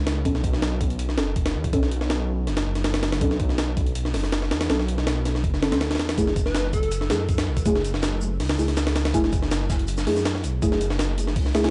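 A straight 4/4 breakbeat drives this nostalgic, atmospheric drum and bass and jungle excerpt at 162 BPM in F# minor. A compressed, sampler-style kit sits up front with a thumpy kick and high-tuned snare, joined at 6.2 seconds by a crunchy acoustic kit with shaker, saturated and rolled-off in the background. Beneath, a rumbling, detuned saw bass with tube drive holds the low end, and a soft, full-bodied chord stab with chorus, dub echo and a filter sweep moves from Bm9 to F#m9. A punchy, bright unison lead with dub echo flickers briefly at 6.5 seconds, and the whole recording carries a dry, gritty hardware sound with small room ambience.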